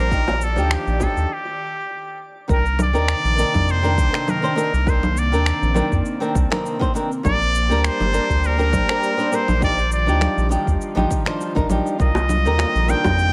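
A nasal, straight-muted trumpet leads this smooth, wistful sunset chillout excerpt up front, singing with vibrato and scooped notes through an analog delay over fingerpicked flamenco guitar that carries its own echoes. An airy, breathy pad with chorus and phaser sits in the background, while a round, dark analog bass with tube saturation anchors the groove beside a deep electronic kick and tape-tinged electronic cabasa, finger snaps and congas in a lightly swung feel. A faint twinkling granular texture sparkles only in the first 1.3 seconds before a brief break, and low-tuned, softly played bongos drift in at the start and again from 12.1 seconds, all within an echo-heavy, small-room mix.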